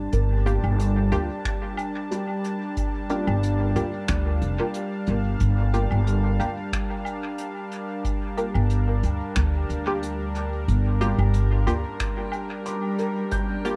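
Ambient dub at 91 BPM in 4/4 with a light swing on the sixteenths, sitting in G minor on a single Gm7 chord, this hazy, spacious passage is cut from a longer piece. A detuned sawtooth pad with chorus holds sustained chords throughout, while an up-front pizzicato upright bass, woody and dark with steel strings, carries the low end until about 11.8 seconds. A felt-muted upright piano plays soft, intimate arpeggios in the background with audible action noise and dub echo, and a filtered dub chord stab enters at 0.5 seconds with a muted, mellow filter pluck, ensemble chorus and echo. The rhythm comes from a deep, tape-tinged electronic kick alongside a dark, smooth brush kit with finger snaps, hi-hat and woodblock, its top rolled off and its hits trailing dub echo. A reversed, granular texture, bright and dreamy with its own reverb, swells in briefly at the very start and returns from 12.2 seconds in the background. 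The echo-heavy mix sits in light reverb and a small-room ambience.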